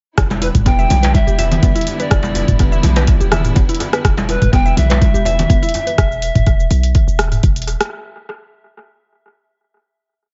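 This afro house piece opens directly into a driving drop over an Em7 chord, built on a deep four-on-the-floor electronic kick, a boomy 808-style bass in a dotted rhythm that pumps with the kick, and a programmed afro-pop kit of metallic hats, rim clicks, shaker and low toms trailed by analog delay. Background congas with a thick-skinned sound, also echoed by analog delay, interlock with each other, while a hard-handed djembe with metal rattles adds a hand-drum cross rhythm. A woody, round synth pluck cycles a 16-step arpeggio through chorus and tape echo, and a dark bowed string section holds sustained chords, both pumping under the kick until about 5.9 s, while a breathy, reedy bamboo pan flute with vibrato carries call phrases through tape echo until 7.4 s, all set in a small, echo-heavy room with a dulled top end.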